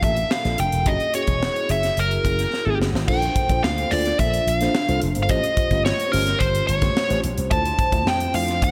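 A big arena sound with a moderate concert hall reverb gives this short cut from a longer piece of polished 1980s jazz-funk pop its urban, upbeat sheen, moving at 108 BPM in a straight 4/4. Up front, a nasal lead guitar with a parked wah carries the melody between Bb4 and A5, its overdriven, picked tone thickened by slapback echo. Beneath it, a bell-like FM electric piano sparkles with fast-attack, decaying chords, colored by phaser, subtle chorus and its own slapback echo. A growly, punchy slap bass run through an envelope filter holds down the low end from E1 to F2, while a crisp fusion drum kit with a high-tuned snare and tight kick drives the groove on hi-hat, crash cymbal, kick and snare. A drum fill from 2.5 to 3.1 seconds leads into a new section, where the harmony shifts from Gm9 and Gb9 to Bbmaj7, A7alt and Dm7.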